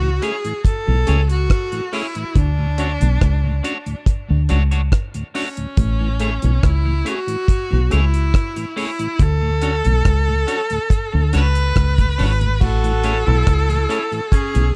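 Sunny, warm roots reggae at 70 BPM in A major, cut from a longer piece, with a clear bowed viola carrying the melody through tape echo, its airy vibrato sounding intense over a bright, picked electric guitar with tube saturation and tape echo, and a mellow tonewheel organ turning through chorus vibrato and a slow rotary speaker. A dark, round, foam-muted fingered dub bass and a dry, smooth acoustic drum kit with a tight kick, hi-hat, rim click and crash sit up front in the studio ambience, while the harmony alternates between Amaj7 and Dmaj7. At 12.6 s a distant, roomy tenor saxophone with light vibrato joins as a second line, also treated with tape echo.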